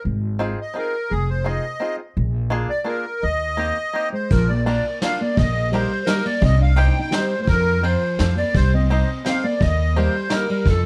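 The recording has a dark, warm production with light reverb, giving this short cut from a longer musette waltz its charming, whirling character. The melody comes from a reedy, sweet accordion with light tremolo tuning, sitting up front in a boxy small room with plate reverb. Beneath it, an up-front pizzicato upright bass with gut strings gives a woody, thumpy low end, while a twangy bluegrass banjo played with fingerpicks adds percussive accompaniment from the opening moments. At 4.1 seconds a thumb-plucked, classical nylon-string guitar joins with a second line, and at 4.3 seconds a vintage brush drum kit enters, its dark cymbals, medium-tuned snare, punchy kick and rolled-off top heard in a small room as the harmony moves to a new key centre. The waltz lilts in three with a straight feel, its chords touching on colourful sixths, sevenths and a suspended passage before closing on Eb.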